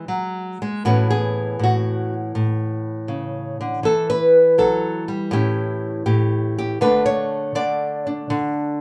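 A lone nylon-string guitar opens this short solo jazz passage, cut from a longer piece, with a brief unaccompanied moment before the harmony settles in at 0.9 seconds. The mood is swinging and playful: a lilting swung feel in 4/4 that stretches and relaxes with rubato. The fingerpicked guitar has a bright, fresh-stringed sound, small in body yet placed up front, ranging from its low A2 up to D5. The harmony moves from Aadd9 to Emadd9, then through A7 before landing on a D5 chord at 6.8 seconds. A moderate small-room ambience surrounds the playing, giving the feel of a live performance in an intimate space.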